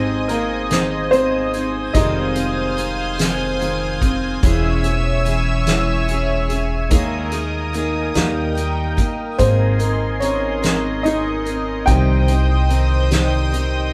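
An upright piano carries the lead through this romantic, swaying six-eight pop ballad, heard from 0.0 to 13.9 s, its intimate, woody tone touched with audible action noise. The tempo is a slow 48 BPM counted in dotted quarters, with a straight feel in Ab major, moving through Ab, Fm7, Dbm/Fb, Ebsus4 and Eb before settling on Abadd9 and Cm. Beneath it, a picked steel-string dreadnought guitar plays bright arpeggios with a little finger squeak, while a lush, thick unison pad of detuned sawtooth and square waves holds sustained chords with a slow attack, long release and chorus. An up-front pizzicato upright bass gives a warm, steel-strung low end, and a soft-mallet drum kit on hi-hat, kick and snare comes in at 0.3 s, sounding distant and roomy with a fat snare and punchy kick. The band plays live together in one studio room with a moderate ambience, and the passage is cut from a longer piece.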